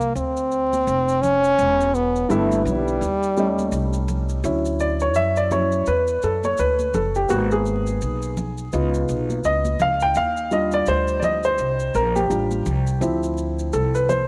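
A smooth, lightly vibrato French horn opens this cool jazz-hop excerpt at 84 BPM over thumpy, woody pizzicato gut-string upright bass and bright, close, dry maracas and congas in a swung 4/4, before a dark, mellow upright piano with audible action noise enters at 2.3 s and, once the horn falls silent at 4.0 s, carries an intimate vintage-toned solo from 4.4 s through rich jazz chords, the whole track set in a small room with light reverb and vinyl crackle.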